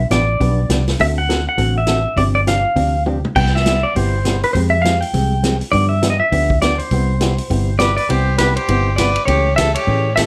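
Set in a moderate club reverb, this swinging, playful western swing passage is led by an up-front pedal steel guitar, fingerpicked and compressed, sliding through its melody with volume swells. Beneath it sit a round, foam-muted electric bass with a punchy, amped tone, a dark, clean hollow-body jazz guitar comping through jazzy chords, and a vintage drum kit with dark cymbals and a rolled-off top that drops a fill at 3.1 seconds. A biting, earthy bowed fiddle with light vibrato adds a second line from 7.8 seconds as the passage moves into a new section.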